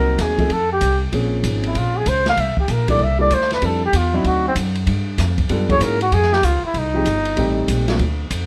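Small-group swing and bop jazz moves at a brisk 192 BPM in 4/4, with a swung eighth-note feel and a cool, swinging mood, heard in a short 8.5-second cut from a longer piece. A flugelhorn carries the melody from the start, up front with a soft attack, vibrato and a roomy, distant quality set in plate reverb, and it touches a high F5 at 0.5 seconds. An upright piano with a woody, natural tone and long sustain accompanies through harmonies such as Bbm9, C13, Fmaj13, D7b9 and Gb9, closing on Am7b5. A pizzicato upright bass on gut strings sits up front, thumpy and warm. An open jazz drum kit enters at 0.2 seconds with hi-hat, kick, ride and snare, sounding dark and smooth in a small room, with a boomy kick, a medium-tuned snare and a rolled-off top. Close, detailed microphones and light reverb keep the sound intimate and clear.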